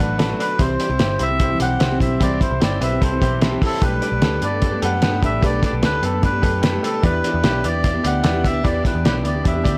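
Jangly indie pop in E minor at 149 BPM, this wistful, restless excerpt sets a reedy, breathy melodica melody over a worn, woody upright piano with audible action noise and a dark, fingerpicked steel-string acoustic guitar tucked in the background. A clean, direct-recorded electric guitar plays arpeggios through a lush chorus, while a foam-muted picked bass with tube saturation sits round and dark beneath, and a cloth-damped, thuddy drum kit enters at 0.2 s, muffled and up front with a fat snare and tight kick. The harmony moves from Bm7 through C and Gadd9 to Em7, and the whole take has a dry, gritty hardware sound with light reverb and transformer saturation.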